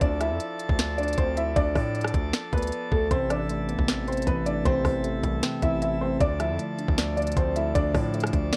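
A half-time trap groove drives this short cut from a longer hip hop piece, with an up-front electronic kit of knocking kick, sharp snare, crisp hats and rim clicks setting a hard-hitting, menacing tone. Underneath, a distorted 808-style bass hits heavy and saturated, its fast attack decaying into a noisy, aggressive growl. A dark, boxy baby grand piano carries the melody through a digital delay, its short sustain and audible action noise giving it an intimate, worn character. A full pipe organ holds majestic, brilliant chords behind it, with a romantic voicing that moves from Dm to Amadd9 and back. At 3.1 seconds a mellow, clean tine electric piano joins with direct accompaniment, while light reverb and the warbling pitch drift of old cassette tape lend the whole recording a faded, unsettled feel.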